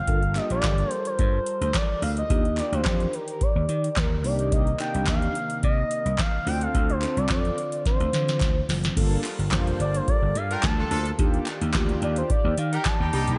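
Up front, a punchy, bright slap bass and a booming analog drum machine with a deep kick, tonal snare and metallic hats drive this slick, late-night early-eighties boogie funk excerpt at 108 BPM in 4/4. An expressive sawtooth synth lead with vibrato and slapback echo carries the melody over round synth brass and a bold, evolving analog pad in the background, all with chorus. Crisp group handclaps sit behind the groove, a drum fill arrives at 7.9 seconds, and a clear horn section with tape echo joins on a second line at 10.5 seconds over the Gm9 to Ebmaj7 changes.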